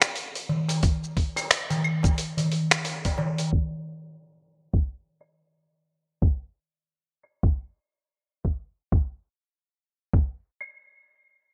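Downtempo at 89 BPM in 4/4, this hypnotic, meditative fragment from a longer piece rolls with a 16th-note swing of 59%. A dusty soul sampler-style drum kit of claves, finger snaps, hi-hat and shaker runs from the start to 10.8 seconds, gritty and tape-warm, with low-pass filtering on its hats, snare and percussion and a gated reverb. A crisp, small metal-shell darbuka sits high in the opening stretch, sounding distant in a large room, and stops at 3.5 seconds. A thumpy, compressed electronic kick drum enters at 0.8 seconds and sits up front through 10.2 seconds. From 3.5 seconds a filter sweep carries the second section to the close, all framed by a moderate plate reverb and a bright 1980s-style digital sheen.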